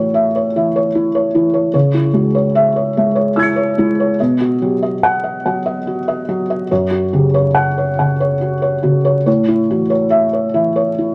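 Unhurried rubato in 3/4 around 72 BPM gives this short slice of a longer neoclassical minimalist piano piece a loose, uneven pulse and a melancholic, wistful mood. A felt-muted upright piano, tuned to A4 = 444 Hz, plays solo throughout the 11.1 seconds, spanning F#2 to C#7 with a soft, dark, intimate tone that sits up front. It moves through A, C#m, B and F#5 before returning to A at 9.3 seconds, inside a moderate studio reverb with vinyl crackle and a rolled-off top end.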